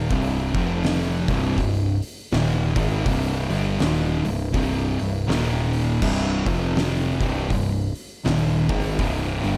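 An oversized, low-tuned drum kit sits up front in this brooding, hypnotic stoner and doom metal passage cut from a longer piece, its fat snare, punchy kick, crash and hi-hat sounding gritty and saturated in a bright stone room, with a swung feel. Alongside it, three picked fuzz guitars churn through a riff cycling C5, F5, Cm and Eb5: one thick, one warm and set in the background, and one dark, double-tracked, compressed and very quiet. A growling, overdriven picked electric bass adds a direct, amped low end, all wrapped in small room ambience.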